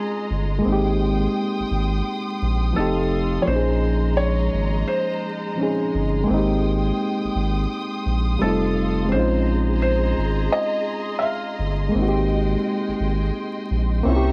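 A swung 16th-note feel at 85 BPM in 4/4 sets an unhurried lo-fi hip hop pulse for this reflective, melancholic excerpt, cut from a longer piece. A felt-muted upright piano carries the melody, soft and intimate with audible action noise, its low-passed tone trailed by plate reverb and tape echo before it drops out at 11.6 s. Underneath, a gritty, reedy electric piano played through a combo amp sits up front with the accompaniment, its cassette-tinged, filtered sound running to the end, while a lush bowed string section holds sustained chords with warm vibrato. A deep, round analog bass enters at 0.3 s, dark and sustained, anchoring a cycle that moves through Bbm11, Abmaj7 and F7. The whole track is wrapped in worn, warbling tape with vinyl crackle and pitch drift, set in a small room.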